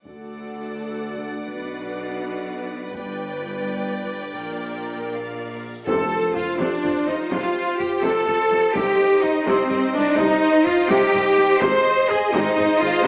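Heard through an AM-radio filter and the wet reverb of a recital hall, this short cut from a longer epic orchestral film score moves at 84 BPM in a straight 6/8, with a majestic, triumphant mood. The strings carry most of the weight: a distant, intense violin section sings the melody from the background, a second violin section holds a smooth, even line beneath it, and a focused viola section fills in the accompaniment, all bowed with lush vibrato. Below them, a bright cello section and a rich, distant double bass section share the bass, while a mellow French horn section sustains chords in the background and a taiko ensemble struck with heavy sticks drives the drums from a live room. The first half moves through D, Bm, G and Bb. At 5.5 s a huge but very quiet reverse cymbal and sub drop lead into an impact at 5.9 s, where the music settles into F mixolydian. Round, close timpani on soft mallets strike F2 at that moment, and a punchy, roomy solo trumpet begins adding stabs over chords of F, Cm and Ab through to the end.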